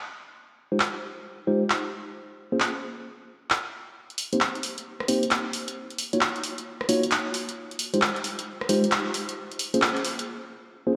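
Bathed in lush hall reverb with a bright 1980s-style digital sheen, this soulful, bouncy two-step UK garage excerpt sets mellow tine electric piano stabs, low-pass filtered and delayed, over a punchy, up-front analog drum machine of swung handclaps, hi-hat and rim click, while a thick, saturated sub bass sits barely audible from 4.3 seconds as a filter sweep on the piano drives a build-up into a brief break at 10.3 seconds.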